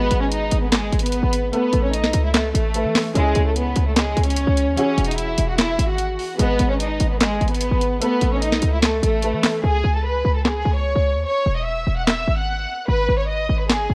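This hip hop and trap excerpt moves at 148 BPM in a half-time 4/4 feel, set in G# phrygian with a melancholic yet hard-hitting mood. Up front, a bowed studio violin section carries the melody, smooth and even with light vibrato and a low-pass filter softening its top. In the background, a clear but boxy baby grand piano plays accompaniment, also low-pass filtered, until it drops out at 9.7 seconds. A short, punchy 808-style bass with a fast attack, a decaying sine tone and a layer of noise sits up front alongside an electronic trap kit of sharp snare, bright hi-hats and handclaps. The chords cycle through G#m, Asus2, C#m and Eadd9, and from 9.6 seconds the hi-hats fall silent as the harmony moves through C#5 and Eadd9 before returning to G#m. Light reverb and studio ambience frame the mix, which carries the worn, warbling character of old cassette tape with drifting pitch.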